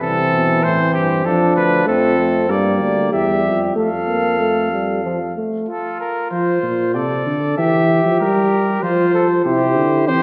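A wet concert-hall reverb fills this short passage from a serious, solemn classical canzona for brass ensemble, its imitative lines moving in an unhurried triple metre. A clear, vintage-toned trumpet carries the melody up front while a warm flugelhorn sings the second line from a distant, roomy position. A light-vibrato euphonium adds accompaniment until 5.7 seconds, then returns at 9.4 seconds, and a present tuba anchors the bass close to the listener.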